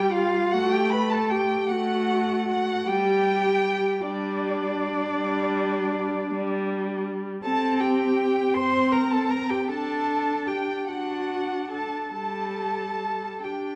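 A rubato 12/8 pulse of 46-54 BPM carries this elegiac, solemn slow romantic movement for string quartet in G minor, where a distant, veiled muted violin sings the melody over a second muted violin line, while a dark muted viola and a muted cello with light vibrato sit up front in accompaniment and bass, all four bowed con sordino by single players and bathed in a wet scoring stage reverb, as the chords move from G5 through C5 to D before settling on G5 in this 13.8-second passage cut from a longer piece.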